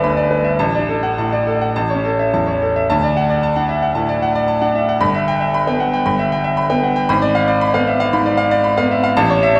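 A classical virtuoso piano study in D major, heroic and sparkling, moves with a rubato pulse between 102 and 117 BPM in 4/4, tuned slightly high to A4 = 445 Hz. A solo grand piano with a brilliant, vintage character and long sustain sits up front, ranging from G1 to B5 across this brief fragment of a longer piece. The opening harmonies pass through Em7/G, D/A and A before the music turns to a new passage on D at 2.9 seconds and ends on a tense G#dim7 at 7.1 seconds, all heard through the generous reverb of a recital hall.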